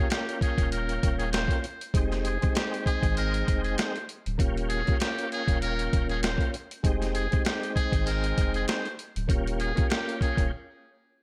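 Tough and dark, this boom-bap hip-hop excerpt moves at 98 BPM with a swung 16th feel, built on a gritty, pitched-down sampler-style drum kit with a thumpy kick and high-tuned snare sitting up front in gated reverb, while a deep, round dub sub bass enters at 0.6 seconds. A smooth tonewheel organ with chorus vibrato, fast rotary speaker and cassette-tape colour plays accompaniment over Eb7 and Fm7 chords beneath a buzzy, breathy jazz-style solo on trumpet with a metal mute, shaped by filtering and delay. From 3.2 to 8.3 seconds a punchy muted trumpet section adds stabs in the background, and the bright 1980s-style digital production, with light reverb, closes on a short break at 10.5 seconds.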